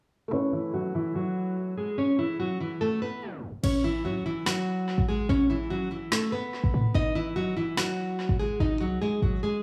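A half-time drill groove at 145 BPM in 4/4 sets a tense, cold tone for this hip hop excerpt, tuned slightly sharp to A4 = 441 Hz. A bright, fingerpicked nylon-string guitar carries the classical-leaning melody up front from 0.3 seconds, finger squeaks audible through a low-pass filter and tape echo, over an Aadd9 chord. Beneath it, a soft, felt-muted upright piano adds mellow, intimate accompaniment in the opening section, shaded by the same filtering and echo while a filter sweep runs and a tape stop closes the passage. At 3.6 seconds the electronic drill kit arrives with a woody snare and crash cymbal, joined by a punchy, tight 808-style bass with a sine tone, noise layer, fast attack and decaying body, later moving onto a G#5 chord. The kit drops out before the bass stops at 9.4 seconds, all inside a moderate echo-chamber reverb and an echo-heavy mix.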